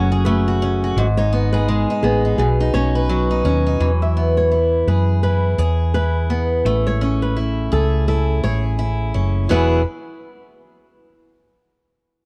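A dry, dark-toned production carries this heartfelt, easy-going acoustic pop excerpt in E major at 84 BPM with a lilting sixteenth-note swing, where an up-front picked parlour steel-string guitar picks out the accompaniment, a fingerpicked flamenco guitar adds high arpeggios with audible finger squeak, and a round, punchy hollow-body short-scale bass sits forward underneath, moving through chords like G#m, Badd9 and Amaj7 before settling on Eadd9 at 9.5 seconds.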